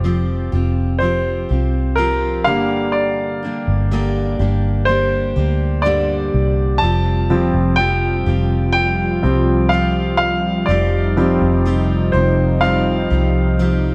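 A clear, polished baby grand piano carries the lead from the first moment, sitting present and up front as it moves between Fsus2 and Gm in this hopeful, emotional pop excerpt. The pace is slow and straight at 62 BPM in 4/4. Underneath, a picked steel-string acoustic guitar plays full-bodied arpeggios, while a vintage muted fingered electric bass adds a round, dark, amped low end that also sits close to the listener. At 6.8 seconds, as the harmony returns to Fsus2, a mellow analog pad enters with slow-attack sustained chords, its detuned sawtooth tone softened by chorus. The whole excerpt is bathed in a moderate concert hall reverb, giving the dark, warm production a spacious, tender glow.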